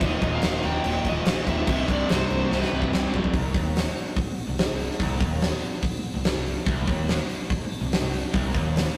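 A straight 4/4 pulse at 144 BPM drives this anthemic, powerful hard rock excerpt, cut from a longer piece and tuned slightly sharp to A4 = 441 Hz. A huge arena drum kit sits up front with a punchy kick, fat snare, bright cymbals, hi-hat and toms, adding a drum fill from 2.5 to 3.3 s as the opening section gives way to the next. Beneath it, a growly, direct picked electric bass holds the low end, while three picked guitars play the riff in the background over chords moving from Eb to C5: a scooped, compressed distorted guitar, an overdriven semi-hollow guitar with a hollow-body tone and a phaser, and a sludgy, double-tracked overdriven guitar that drops out from 3.3 to 6.7 s. A high-gain lead guitar carries a short melody high above the riff from 0.1 to 2.9 s. The rough rehearsal-room recording has a small room reverb and tube saturation that give the whole mix a gritty, live edge.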